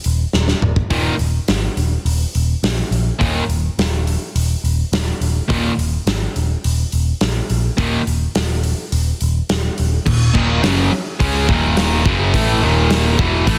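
A straight 4/4 beat at 105 BPM drives this aggressive, heavy hard rock piece in Eb minor, as the big rock drum kit opens with a fill from 0.3 to 0.9 seconds, its punchy kick and medium-tuned snare sitting up front with a roomy, rolled-off top, while the growly picked electric bass rumbles in the low end. At 0.9 seconds a bright, double-tracked distorted electric guitar riff joins with overdrive, and the harmony moves from an Eb5 power chord to Eb minor when a new section arrives at 10.1 seconds. Light studio reverb sits under a dense, heavily limited modern master.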